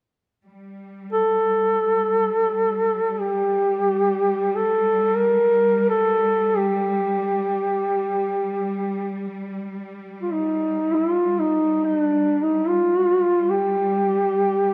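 This Caucasian folk lament, a fragment cut from a longer piece, unfolds in free time with a solemn, mournful mood. A symphonic cello section opens at 0.5 s, holding a bowed drone on G3 with a clear, focused, lush ensemble tone and vibrato, set well beneath the lead. At 1.1 s a solo duduk enters with the melody, moving between D4 and Bb4 in a mellow, folk-style voice with a soft attack and vibrato. The duduk sits up front yet carries a roomy, distant quality. A moderate concert hall reverb surrounds the music.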